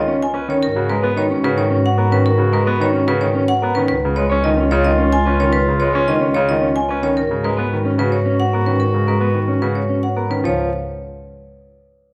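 Hypnotic and propulsive, this minimalist classical pattern music moves at 110 BPM in a straight 3/4, centred on Db mixolydian and cut from a longer piece. A marimba played with hard mallets carries the melody between Bb4 and Ab5, its tone bright and percussive, while a distant, roomy clarinet holds a narrow second line between F4 and Gb4. A polished grand piano gives brilliant, intimate accompaniment with audible action noise and long sustain, and a chamber double bass section, bowed, intense and up front with vibrato and a smooth top, anchors the low end from Db2 to Ab2. An electric guitar at the edge of break-up, dark and fingered, plays arpeggios from 0.1 seconds. The harmony alternates between Db7 and Abm9 before settling on Db at 10.4 seconds as a brief new section begins, all held in a wet recital hall reverb.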